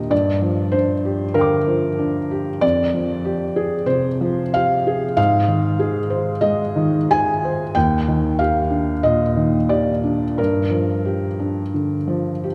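In loose, rubato time with uneven beats, this melancholic, intimate neoclassical minimalist piano fragment features a solo felt-muted upright piano, soft and boxy with audible action noise and placed up front, moving through Gm7, Fmadd9, Ab6 and Ebmaj7 before settling back on Gm7, all bathed in a lingering church reverb of 3.1 seconds.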